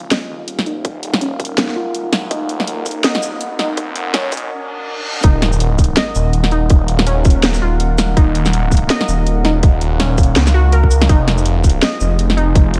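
Set in a digital ambience, this dark, cinematic half-time drum and bass passage, cut from a longer piece, is driven by a tight, up-front electronic kick and a cracking snare with hi-hat and shaker in a swung half-time feel. A swirling, thick phased saw bass and a deep, moody ambient pad with sidechain pumping fill the low and middle ground, while a warbling, lo-fi pluck plays mellow arpeggios through dub echo, its filter sweeping through the build-up. In the background a riser and reverse cymbal lead into the drop at 5.2 seconds, where a sub drop impact lands, and the harmony moves to a new chord at 11.1 seconds.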